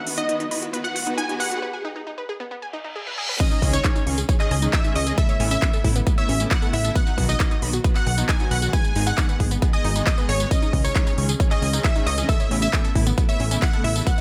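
A light reverb sits over this short cut of uplifting trance, which is driving and emotional, in C# minor at 135 BPM with a straight 4/4 pulse and tuning set slightly below standard pitch. It opens with a build-up: a detuned supersaw stab carries the melody under a filter sweep, with sidechain pumping and delay. Alongside it come a faint, phaser-tinged high pluck line, a warbling, vintage-sounding pluck arpeggio with a cassette-tape tint and delay, and an electronic riser and reverse cymbal. A lush bowed string section holds sustained chords with vibrato and portamento, while a big-room dance kit adds crisp hats, handclaps, tambourine and crash, all high-passed and pumping. At 3.4 seconds the drop lands with a punchy, up-front electronic kick, and at 3.6 seconds a funky, plucky analog bass with a ring-modulated, sawtooth bite joins in. Underneath, the chords cycle through B, G#m, C#sus2 and Aadd9.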